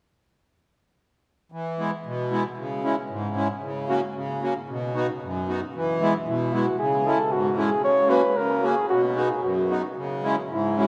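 Bouncy and jolly, this short cut from a longer alpine folk dance-band piece in E major moves at 114 BPM in 2/4 with a loose, rubato feel, as a reedy, slow-beating accordion carries the accompaniment up front from 1.5 seconds through a cycling E, C#m, F#/C# and B progression, and a mellow, punchy flugelhorn enters at 6.3 seconds with a classical-style solo melody, all bathed in the long, wet reverb of a vast, echoing cathedral-like space.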